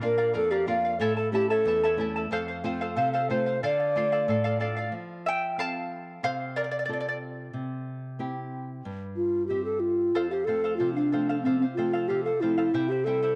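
Bass ocarina, charango and nylon-string guitar open this wistful, melancholic Andean folk excerpt together at 92 BPM in a straight 2/4. The clay ocarina sits up front with an airy, vibrato-tinged voice, soft attack and rolled-off highs, over the guitar's small, fingerpicked accompaniment. The bright, shimmering charango, with its double and some octave-doubled strings, takes a solo from 4.9 s, and the ocarina returns at 9.2 s over F and C chords, all set in a moderate spring reverb.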